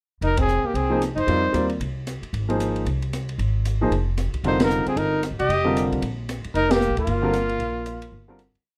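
Spiritual and searching, this short modal jazz piece swings at 228 BPM in 4/4, centred on F dorian and moving from Fm7 to Ebadd9/F at 4.4 seconds. A warm, softly attacked trumpet with vibrato carries a motif-based melody of call phrases, while a breathy alto saxophone with light vibrato shadows it in a harmony line mostly in sixths. Both horns play from 0.2 to 1.7 seconds and return at 4.5 seconds. A woody, growly upright bass with steel strings sits up front in a plucked two-feel, and a dark, smooth drum kit keeps a ride cymbal pattern with a high-tuned snare and boomy kick. A clear grand piano enters at 0.9 seconds with syncopated comping in quartal voicings, and the band hits accents together before the whole piece fades out from 7.0 seconds in a small room with a rough, homemade mix.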